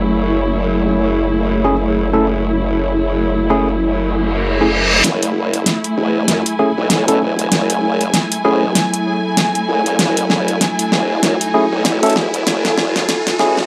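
A bright, clean tine electric piano sits up front with short stabs from 1.6 seconds, touched by subtle chorus and tape echo, in this gritty, funky glitch hop passage cut from a longer piece, moving at 97 BPM in 4/4 with a swung sixteenth-note feel in F# minor over an F#m9 chord. Beneath it, a formant-sweep wobble bass wobbles with a saturated, compressed, sustained tone, carrying chorus and a high-pass filter and sitting up front in the mix. A warbly, detuned tape-like pad holds sustained chords in the background with a nostalgic lo-fi haze of chorus, reverb and phaser, while a muted studio string section adds a dark, veiled, bowed layer with vibrato. A reverse cymbal at 4.3 seconds leads into a build-up at 5.0 seconds, where a layered, overdriven pop drum kit arrives with a fat snare and metallic hi-hats, alongside a drum fill, a riser and a filter sweep on the pad. The overall sound is dry and gritty, carrying transformer saturation and a digital ambience.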